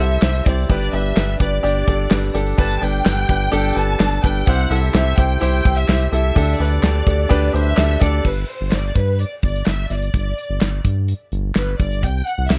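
A lush, bowed violin section carries the melody over clear concert grand piano and a round, deep analog bass from the very start, with an acoustic drum kit of tight kick, snare, hi-hat, handclaps and crash joining at 0.1 seconds in this uplifting, hopeful piano-driven pop piece at 127 BPM in straight 4/4. The violins sit distant with vibrato and portamento while the bass and drums stay up front. The piano drops out at 8.3 seconds as the harmony moves from C, G and Dsus4 to G5 and C5, all captured in a dry, close 1970s-style studio sound tuned to A4 = 438 Hz.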